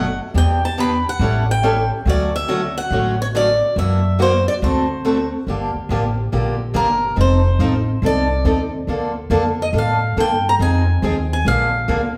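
Fiery and virtuosic, this short cut from a longer jazz manouche piece swings in 4/4, with a bright, boxy picked swing-style acoustic guitar carrying the melody up front, finger squeaks audible, over a warm parlour-toned steel-string guitar picking the accompaniment. A woody, thumpy upright bass on gut strings anchors the bottom with dark pizzicato. The trio plays live together in a large studio, wrapped in a wet reverb, as the harmony moves from Em7 and A7 into a minor-key passage on Gm7 at 5.5 seconds.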